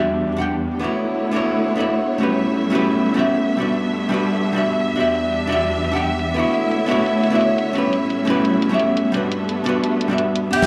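A dark production bathed in a recital-hall reverb opens this dreamy, rolling liquid drum and bass cut at 173 BPM, where a clean, hollow-body archtop guitar with digital delay and a lush, bowed string section hold the foreground over chords moving from Em9 through Dmaj13 and A13 to Gmaj7. Far behind them, a bright, overdriven electronic hi-hat runs under a filter sweep with a light 16th-note swing. Only at 10.5 seconds do a breathy, subtone alto saxophone on G4 and a gritty, pitched-up jungle kit of ride and high-tuned snare arrive, joined at 10.6 seconds by up-front acoustic congas just as the cut ends.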